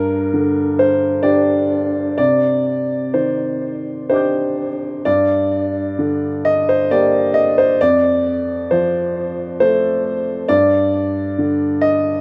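A boxy, up-front grand piano plays alone through this wistful, intimate neoclassical minimalist fragment in G minor, moving in a rubato 3/4 at around 62-68 BPM, with tape echo on the piano and small-room ambience giving the rough home-demo mix a close, private feel as the harmony passes from Gm and Cmadd9 back to Gm, then F, and reaches G5 at 10.5 seconds before this 12.2-second passage, cut from a longer piece, ends.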